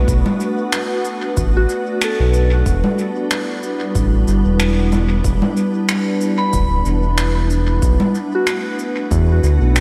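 Ambient dub with a deep, spacious mood, heard in a short excerpt that moves from Bm7 to Em7 and back over a lightly swung feel. A calm, organ-like pad with ensemble chorus and built-in reverb holds sustained chords up front beside a round, mellow analog bass, while a soft FM synth bell warbles through arpeggios with chorus and analog delay. From 0.1 seconds an overdriven electronic kick sits in the background alongside tape-tinged electronic cabasa, congas and finger snaps carrying dub echo, and the dreamy mix is soaked in a lush hall reverb.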